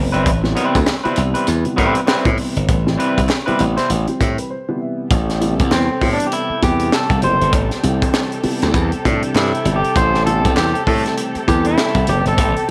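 Driving and funky, this funk excerpt moves at 99 BPM in 4/4 with a 16th-note swing, sitting in A minor on an Am9 chord, tuned slightly below standard pitch. A glassy slap bass sits up front, bright and punchy, while a crisp fusion drum kit with a high-tuned snare and tight kick brings a gritty, saturated edge from a pumping small room. An electric guitar at the edge of break-up, twangy and fingered, plays accompaniment, and a dark upright piano with woody, slightly detuned tone and audible action noise adds stabs from the background, alongside very quiet group handclaps. The piano plays a fill from 3.9 s into a brief break at 4.5 s, and at 5.1 s the second section opens with a clean electric guitar solo as a muted string section enters, veiled and con sordino with light vibrato, holding sustained chords behind it. Light small-room reverb colours the mix.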